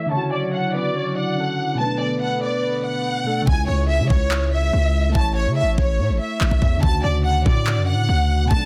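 A half-time drill rhythm in 4/4 drives this menacing, tense hip hop excerpt, where a lush, bowed violin section carries the melody with vibrato over round, mellow electric-piano-like synth keys, joined at first by a dark octave-layered synth lead with phaser and a hollow, flute-like pad in the background under a filter sweep, before a heavy, distorted 808-style bass and a drill kit of knocking kick and handclaps arrive up front at 3.5 seconds in a dry, dense, heavily limited mix.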